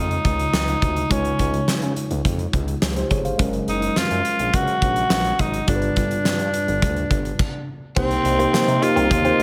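Bathed in a moderate hall reverb, this glossy, nostalgic 1980s-style pop excerpt sets a raspy, up-front tenor saxophone melody with delay over mellow, slightly out-of-tune tine electric piano, smooth gliding detuned synth bass and a huge gated-reverb arena drum kit with a fat snare and punchy kick, before a brief stop at 7.4 seconds gives way at 8.0 seconds to a swirling phased analog pad and a very quiet, clean, direct-recorded electric guitar riff.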